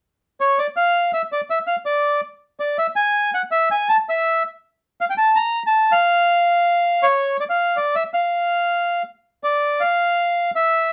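A lone bandoneon opens the excerpt at 0.4 seconds, its reedy, airy voice placed up front and carrying a sultry, dramatic tango mood. The line sits in a high register, moving between C#5 and Bb5. Though the tempo is marked at 163 BPM in 3/4, the playing is rubato, so the pulse breathes freely rather than holding a strict beat. The same opening section returns at 9.4 seconds before the bandoneon falls silent at 10.9 seconds. A moderate studio ambience and a dark production give the solo instrument an intimate, shadowed setting.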